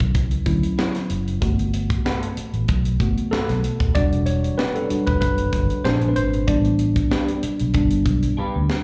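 Lush 1970s-style soul at 95 BPM with a gentle 16th-note swing, smooth and romantic, this short cut sounds like a live gig heard through a club PA, bathed in club reverb. A worn, slightly out-of-tune tine electric piano, lightly overdriven through a combo amp with slapback echo, sits up front and solos over a rootless Dmaj9 that moves to Gmaj9 and drifts through Em9 and Bb9 to A9sus4. A dark, round, foam-muted fingered bass and a tight funk kit with a high-tuned snare hold the groove, the drums closing on a fill at 8.4 seconds, while a bright, twangy electric guitar through a small old amp enters at 0.8 seconds with a faint, slightly broken-up riff coloured by analog chorus and slapback echo.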